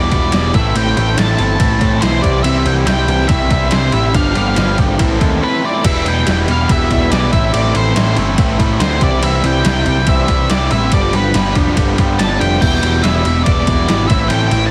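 Restless and moody, this short indie rock piece, cut from a longer work, drives along at 142 BPM in a straight 4/4 in A minor. An up-front, double-tracked stack guitar, overdriven and picked, carries the riff from the low E2 up to A4, while a dark, round electric bass growls beneath it with its own overdrive. Above them, an octave-fuzz lead guitar sings a dark, distorted melody between B4 and A5, sitting a little lower in the mix than the others. The drums have a gritty, pitched-down, sampler-style character, re-recorded in a small room, with a thumpy kick, a medium-tuned snare, crash and ride cymbals. The harmony cycles through Em7, Am7, C and G7 across two passes of the same section, the second beginning at 5.8 seconds, all in a dry, heavily compressed radio-style sound.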